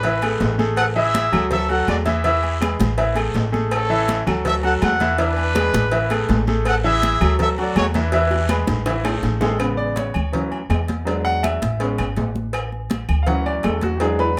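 Heard in a moderate studio reverb, this sunny, danceable salsa passage from a longer piece puts a polished, brilliant grand piano and a thumpy, woody upright bass up front, with close, dry congas carrying a thick, damped skin tone. A tight trumpet section with light vibrato leads the melody until 8.6 seconds. The piano then takes a solo from 9.6 seconds, while ringing agogo bells and timbales, round cowbell and bongos, woody claves and a raspy, distant guiro sit in the background, the guiro stopping at 9.6 seconds.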